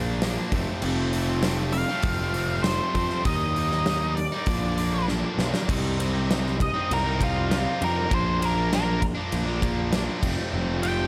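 A fuzz-drenched, punchy picked bass sits up front in this driving, gritty classic rock cut in C dorian at 99 BPM, joined by a bright, double-tracked overdriven guitar riff and a huge arena drum kit with bright cymbals, before a dark octave-fuzz lead guitar with tape echo enters at 1.7 seconds and takes a solo from 5.7 seconds after a drum fill, all in a small room.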